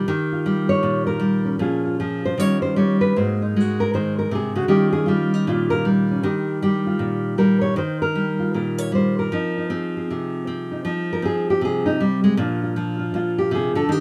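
A solo nylon-string guitar, full-bodied and up front with fresh strings, carries this 14-second excerpt of solo jazz in Eb mixolydian at 157 BPM, swung yet loose with rubato phrasing. Thumb-plucked with a classical touch, it moves through Eb9, Bbm7 and Ab9 before settling toward Fm7 and Bbadd9, finger squeak audible in the close, detailed sound under light reverb. The mood is warm and sophisticated, and the passage is cut from a longer piece.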